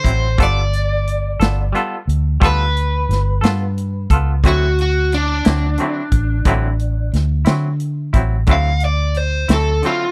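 A dry, close 1970s-style studio sound frames this swaggering, rollicking slow blues in 12/8 at 59 BPM in D mixolydian, where an overdriven, picked semi-hollow guitar carries the melody up front over a clean, scooped semi-hollow guitar with tremolo, a natural country drum kit of punchy kick, medium-tuned snare and hi-hat, and a dark, round, foam-muted fingered bass that enters at 0.1 seconds, as the harmony moves from G9 at 0.4 seconds to D9 at 4.4 seconds in this brief excerpt cut from a longer piece.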